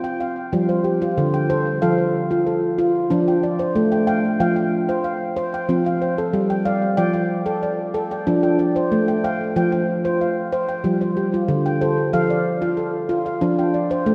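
A solo handpan carries this fragment of meditative world music, its ringing, bright nitrided-steel tones struck with sharp finger strokes and placed close and up front across the full 14.1 seconds. The mood is dreamy and gentle, moving at 93 BPM in a straight 4/4, with the instrument tuned slightly below standard pitch to A4 = 438 Hz. Its notes span D3 to G5, and a tape echo trails behind the playing. The harmony moves between F5, G5 and Dm/F chords, settling on Dm/F at 3.1 seconds and again at 13.4 seconds. A lush hall reverb with a three-second tail soaks the mix in a hazy, dreamy wash, and lossy compression artefacts can be heard in the sound.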